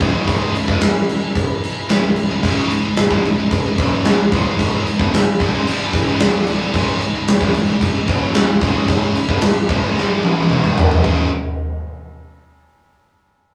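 This rough rehearsal-room recording has a moderate studio reverb, giving the aggressive, epic heavy metal a raw, roomy edge. Up front sits a big acoustic rock kit, with a tight kick, a medium-tuned snare, toms and crash cymbal, its top end rolled off. Two bright, high-gain picked guitars grind out a low riff in the background, joined by a very quiet, double-tracked overdriven guitar and a growly fingered bass with fuzz. Far behind them, a distant chamber string section holds dark, woody bowed chords with vibrato, barely audible. The harmony centres on C# minor, shifting briefly to D5 at 6.2 seconds, and a drum fill from 10.0 seconds pushes toward a final C#5 before the band cuts off at 11.3 seconds.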